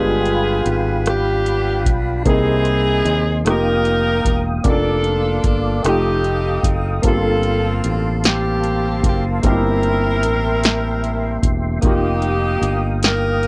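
An edgy, close-miked saxophone section carries the melody up front in this hopeful, reverent slow gospel piece in 6/8 at 50 BPM, over a polished grand piano in the background, soft flute-like tonewheel organ chords with slow rotary speaker and chorus vibrato, a growly fingered electric bass, and an analog drum machine with a deep kick, punchy snare, rim click and metallic hats that enters at 0.3 s, all captured in a dry, close 1970s-style studio sound.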